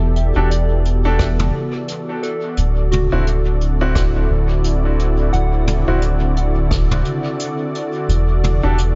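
Ambient dub with a meditative, hazy mood, cut from a longer piece and moving in a swung 4/4. A soft, round sub bass sits up front with tube saturation, under a warbling, detuned analog pad that sustains chords through chorus, shifting from Em11 to D9 at 2.6 seconds and back to Em11 near the end. A gentle FM bell traces arpeggios in the background with chorus and dub echo until 8.1 seconds, while a breathy, wind-like tuned noise texture hovers dark and airy in the background. Brushes on a jazz kit tick out hi-hat, rim clicks and toms with dub echo, joined by a very quiet, tape-warm electronic kick from 1.2 to 6.9 seconds. A brilliant, woody upright piano adds short stabs with audible action noise and dub echo, all set in light reverb with a softened top end.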